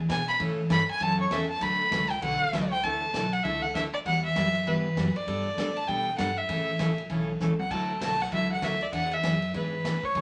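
Western swing country, cheerful and swinging, in a short cut from a longer piece where a rich, nasal fiddle with light vibrato and an airy bow carries the melody up front, soloing through the opening 2.8 seconds, over a full-bodied picked jumbo acoustic guitar, a woody, thumpy pizzicato upright bass on gut strings and a vintage drum kit with dark cymbals and a rolled-off top that plays a brief fill at 7.4 seconds, all in a small room with a wet studio reverb.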